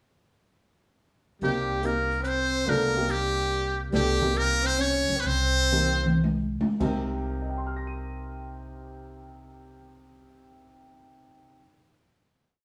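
A muted trumpet and breathy tenor saxophone open together at 1.4 s over a Cm7 harmony, the buzzy, forceful trumpet stating a motif-based melody up front while the whispered, subtone saxophone doubles it an octave below, giving this short modal jazz piece in C minor and swung 3/4 an intense, hypnotic air. Smooth grand piano comps in syncopated quartal voicings, a woody, growly upright bass plays in two, and a dark, boomy drum kit keeps time on the hi-hat with sticks, the tempo moving between 100 and 144 BPM and slowing from 3.9 s through a drum fill. The horns stop at 6.2 s, the drums at 7.0 s, and piano and bass hold the final chord in a moderately reverberant room, the piano ringing alone until 12.1 s.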